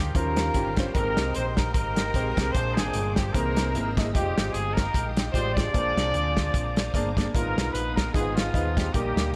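Hopeful and soulful, this short excerpt of uptempo gospel moves at 150 BPM in 4/4 with a swung eighth-note feel. A distant, roomy trumpet carries the melody with vibrato alongside a vintage-sounding horn section with octave doubling, set in the background. Underneath sit a round, dark fingered electric bass and a gritty, saturated soul drum kit of kick, snare and hi-hat, the kit up front, tight and rolled-off on top with a pumping room sound. A clear concert grand piano accompanies with audible action noise and deep bass, while a reedy tonewheel organ with key click and fast rotary speaker and a lush, bowed string section hold very quiet sustained chords. The harmony runs through rich extended chords such as Eb13, Abmaj9, C7alt and Fm9 before settling on Abm6, all under a light reverb.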